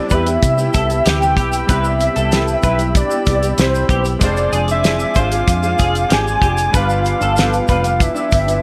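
Indie and bedroom pop with a hazy, laid-back mood, this excerpt is led up front by a soft, octave-layered synth lead with a round, sub-octave body, ensemble chorus and tape echo, over a fingerpicked nylon-string guitar with warbly pitch drift and detuned analog keys. A slightly broken-up electric guitar through a small old amp adds a lo-fi second line from 0.1 to 7.8 seconds, while a hollow, flute-like pad sustains chords in the background. A dry, damped 70s kit with a fat snare and tight kick plays alongside a dark, foam-muted fingered bass, with a grainy tube shaker in the background, as the chords move from Cmaj7 through Fm6 to G7 under light reverb.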